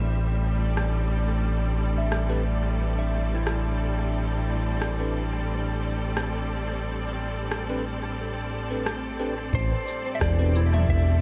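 A lightly swung 4/4 pulse at 89 BPM carries this hazy ambient dub passage in A minor, where a round, overdriven fingered electric bass sits up front beneath lush, distant bowed symphonic strings holding an Am11 chord and a breathy, wind-like tuned noise layer; a background electronic kit of rim click, shaker and toms, low-pass filtered and fed into dub echo, joins at 0.8 seconds, followed by soft, warbling FM synth bell arpeggios with chorus, tape echo and a filter sweep, and bright, clean tine electric piano stabs with dub echo, until at 9.5 seconds a slightly broken-up electric slide guitar melody and a deep analog kick drum arrive for a brief closing section, with a light reverb around the mix.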